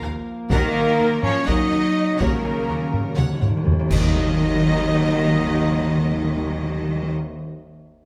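Taiko ensemble played with heavy sticks drives this epic, relentless orchestral film cue in Eb minor, pounding through the opening until 4.0 s in 7/8 at 251 BPM counted in eighths. A lush violin section carries the melody from 0.5 s, shadowed by a very quiet second violin line, an airy, hollow small flute group and a very quiet viola accompaniment. Mellow French horns and warm, tight trombones hold sustained chords while distant, punchy trumpets add stabs in the background. Beneath them, a distant cello section and a clear double bass section in the background anchor the low end, and articulate timpani with hard mallets on calf heads play a fill before a drum fill leads into a band accent at 3.9 s. There, bright clash cymbals and concert bass drum strike briefly as the music moves to a new section. A moderate scoring stage reverb gives the ensemble a spacious, cinematic sheen in this short cut from a longer piece.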